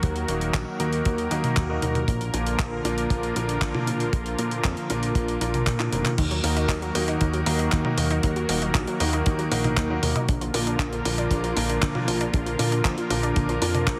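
Melodramatic and bittersweet, this italo disco excerpt in Eb harmonic minor moves at 117 BPM, with a dry, tight acoustic kick and a clean 12-bit drum machine of handclaps, hi-hat, toms and crash driving a glossy chorused synth bass, while a background analog pad warbles under delayed stabs from a clear, intimate baby grand piano with audible action noise, and a round, nasal analog pluck adds arpeggios from 6.2 seconds after a drum fill, all squeezed into a heavily compressed radio sound with light small-room reverb.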